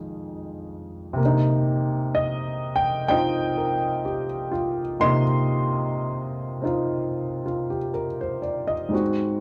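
Cool and swinging, this brief fragment of solo jazz piano unfolds at a slow 62 BPM in 4/4, with swung eighths and a loose, rubato feel. A concert grand carries everything alone, moving from Fm9 to Cm7 at 1.2 seconds and settling into C minor for the rest of its 9.4 seconds. The instrument spans F2 to C6, and its deep bass gives the low register real weight. Placed up front and sounding natural and intimate, the piano lets the audible mechanical noise of its action come through. A moderate studio reverb and a dark, warm production wrap the performance in a close atmosphere.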